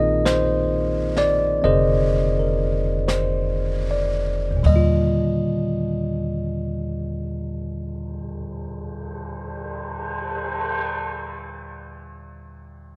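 Romantic and tender, this brief jazz ballad fragment drifts in 4/4 at 37-45 BPM with a lilting swing in Eb major, as a bright, bell-like tine electric piano sits up front over Bb9sus4 resolving to Ebmaj9 at 4.6 seconds, a woody, thumpy pizzicato upright bass on gut strings holds the low end until 8.2 seconds, and a softly brushed kit with dark cymbals, a high-tuned snare and a boomy kick murmurs beneath, all captured close and dry as the tempo eases down through the opening bars.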